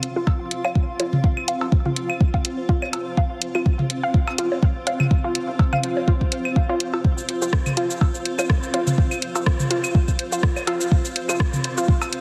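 A swung 124 BPM minimal techno groove in 4/4, cut from a longer piece and building throughout, sets a soft, tape-warm electronic kick up front over a garage drum kit of cabasa, hi-hat and rim click, overdriven electronic cowbell, bongos, claves and toms with digital delay, a barely audible rubbery square bass, a squelchy resonant blip pluck riff from 0.2 s through chorus and tape echo, a blurred granular cloud pad and a faint pulsing gated texture, both pumping under sidechain, all in a lush hall and a heavily compressed radio sound for a hypnotic, clinical mood.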